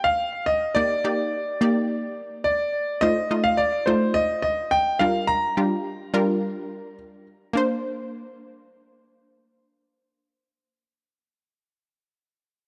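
A dark, warm mix with a moderate plate reverb frames this summery, carefree pop fragment in a straight 4/4. An intimate concert grand piano with audible action noise carries the melody through tape echo until 6.9 seconds, while a punchy, detuned sawtooth pluck with a noise layer enters at 0.8 seconds as up-front accompaniment and carries on alone to 10.9 seconds. The harmony moves through Ebmaj7, F7 and Gm7 before settling on Bbadd9 as the second section arrives.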